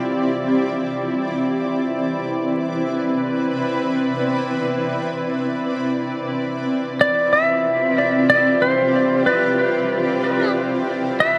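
Wet echo-chamber reverb and a bed of vinyl crackle surround this deep, meditative ambient fragment in free time and D dorian, where a cloudy, blurred granular pad with a slow attack and long release holds sustained chords moving from Dm11 to Cmaj9 and back, and a clean, twangy electric lap steel guitar joins it at 7.0 seconds with an up-front slide melody trailed by dub echo.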